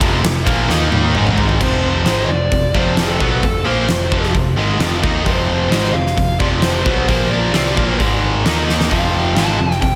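A big arena sound with a lush hall reverb opens this swaggering, energetic hard rock excerpt, which moves at 132 BPM in a straight 4/4. Two bright, overdriven rhythm guitars, a cranked stack and a distorted electric, sit in the background playing a riff with slapback echo, built on power chords that move from F5 through Eb5 and Ab5 and later touch Bb5. Underneath, an overdriven picked bass adds a growly, punchy low end. The huge arena drum kit is up front, with a fat snare, punchy kick and bright cymbals, and it plays a fill from 0.7 to 1.6 seconds and another at 8.7 seconds. At 1.6 seconds a dark, smooth lead guitar enters with an overdriven melody, carrying the tune above the riff for the rest of the clip.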